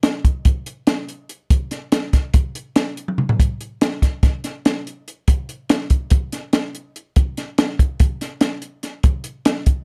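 A compact acoustic cocktail drum kit sits up front in a small room, its hi-hat, punchy kick, high-tuned snare and toms sounding smooth and dark with a rolled-off top under light reverb, driving a wistful yet bright rock fragment in straight 9/8 at 286 BPM in eighths, with a brief drum fill at 3.1 seconds.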